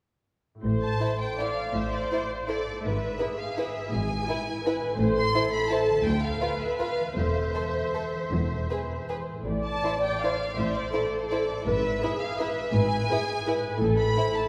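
Bittersweet and sweeping, this orchestral ballroom waltz in 3/4 moves with a flexible, rubato feel. A concert harp opens at 0.5 s with ringing, thumb-plucked arpeggios that sit in the background, and the string sections join almost at once. A violin section carries the melody from 0.8 s with a smooth, even tone and vibrato, while a second violin section adds a rich, expressive line beneath it. A dark, woody viola section fills out the accompaniment, and lush cello and double bass sections anchor the bass, the cellos sliding with portamento and the basses playing with a soft attack. A long, wet church reverb surrounds the ensemble, and the passage, cut from a longer piece, runs to 14.5 s.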